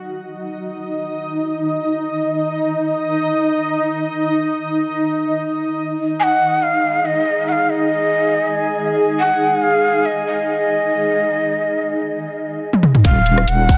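A lush hall reverb and a dense, heavily limited master frame this brooding, meditative slice of deep dubstep in Eb minor, moving in free time and cut from a longer piece. A granular cloud pad opens alone, holding blurred, evolving chords with a slow attack and long release. At 6.2 seconds a breathy, mellow shakuhachi enters with a bamboo chiff and vibrato, its melody trailed by dub echo. A garage drum kit, overdriven and up front, plays a fill of hi-hat, rim click and toms from 12.7 seconds. At 13.0 seconds a tight, overdriven electronic kick and a deep, dark wobble bass with chorus and tube saturation land together on an Ebmadd9 chord, closing the passage.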